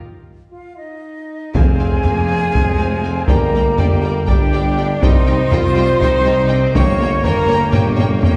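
Dark and epic, this cinematic orchestral cue drives forward in an asymmetric 7/8 at 242 BPM in F minor. It opens with an airy, bright silver concert flute tracing a second line and a clear French horn section holding sustained chords over Ebsus2, before a drum fill ushers in the full orchestra at 1.5 seconds. From there, hard-stick taiko, compressed and saturated, pounds at the front, and very quiet calf-headed timpani add weight only until 2.3 seconds. The low end is built from a focused cello section, a mellow, punchy tuba set back in the room, and a lush double bass section, while soft organ flute stops with baroque chiff and a distant viola section with expressive portamento fill in the middle. Two violin sections carry the upper lines, a smooth chamber section with the melody and a very quiet symphonic one beneath it, as the harmony moves through Fm, Gm, Cm and Gdim. A wet scoring-stage reverb places the ensemble toward the back of the hall, and another drum fill closes this fragment of a longer piece.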